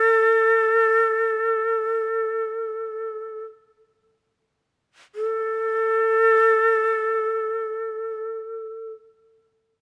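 In free time, a calm, austere passage of Japanese traditional music slows down through its first 5.2 seconds before a second section begins. A solo end-blown bamboo shakuhachi sits up front around A4, tuned to A4 = 443 Hz, with a breathy, bright tone, soft attacks with a touch of chiff, vibrato and an unsteady quality, playing until 8.9 seconds. The close, detailed recording carries light reverb, and the clip is cut from a longer piece.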